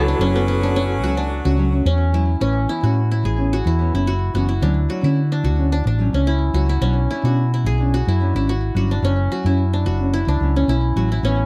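A carefree, warm highlife excerpt at 109 BPM in straight 4/4, moving through F#m, Aadd9, Dmaj7 and Bmadd9 before returning to F#m. It opens with a brief two-part figure. A dark, slightly broken-up electric guitar with tremolo carries the melody in the background, while a raspy, gritty tenor saxophone adds a second line with vibrato and scooped notes. Both stop at 2.1 seconds. Underneath, a fingerpicked nylon-string guitar supplies deep classical accompaniment with audible finger squeak, and a bright-edged qanun played with fingerpicks runs arpeggios up front, its triple strings carrying a slapback echo. A round, punchy, amped hollow-body short-scale electric bass, played with the fingers, anchors the low end as the most prominent part in a dry, close 1970s-style studio sound with light reverb.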